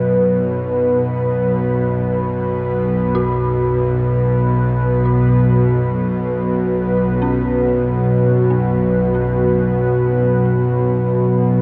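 A tense, string-like bowed-like drone sits up front, its detuned sawtooth tone carrying vibrato and built-in reverb beneath a deep, moody analog pad of sustained chords treated with chorus and phaser, both running through the full 11.6 seconds of this dark ambient excerpt in free time on a B5 chord. Very quiet, an eerie, inharmonic synth bell warbles through arpeggios, while a bubbling, resonant stepped-filter texture with chorus and built-in reverb stays in the background. The whole unsettling, ominous passage unfolds in a vast, echoing cathedral space.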